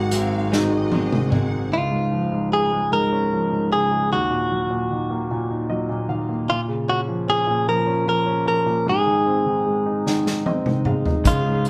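A live-in-one-room sound, bathed in a wet studio reverb, frames this heartfelt, tender six-eight pop ballad, cut from a longer piece. Up front, a clean, direct-recorded electric guitar carries the melody in a compressed, picked tone, while a clear grand piano with audible action noise and long sustain plays the accompaniment throughout and adds fills, the first arriving at 5.3 seconds. In the opening bars, a lush, distant violin section adds a bowed second line with expressive vibrato, a reedy tonewheel organ holds sustained chords through fast rotary speaker and chorus vibrato with a touch of key click, and a second clean electric guitar plays arpeggios in the background. These three parts drop out at 1.7 seconds, leaving the lead guitar and piano to carry the longer second section over a progression moving from Db through Ebm and Bbm to Ab. An acoustic drum kit played with bundle sticks, with a tight kick and medium-tuned snare, fills in the opening and returns up front at 10.1 seconds for another fill, joined in the final moments by the organ and the arpeggiated guitar.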